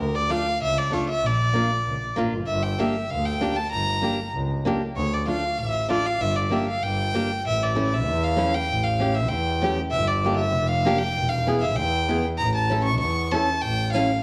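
Festive yet bittersweet, this klezmer passage at 97 BPM in 2/4, cut from a longer piece, sets an earthy bowed violin melody with light vibrato over a dark, veiled con sordino double bass and warm, full-bodied fingerpicked nylon-string guitar entering at 0.3 seconds, all wrapped in a moderate echo-chamber reverb and small-room ambience as the harmony moves from D minor toward A major at 7.5 seconds.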